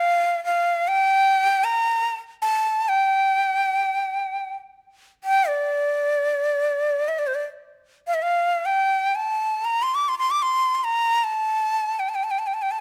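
A lone ney opens the recording, its breathy, reedy tone placed up front in a close, detailed recording with light reverb. This is Turkish makam music in free time, tuned to A4 = 436 Hz, and its mood is hypnotic and melancholic. The end-blown reed cane plays solo for the full 12.8 seconds, ranging from C5 to D6 with a soft attack, vibrato and lifted, bright highs. An opening section is heard, and then the same section begins again at 7.6 seconds, which gives the brief passage a circling, trance-like quality. Cut from a longer piece, it captures the ney's airy grain in intimate detail.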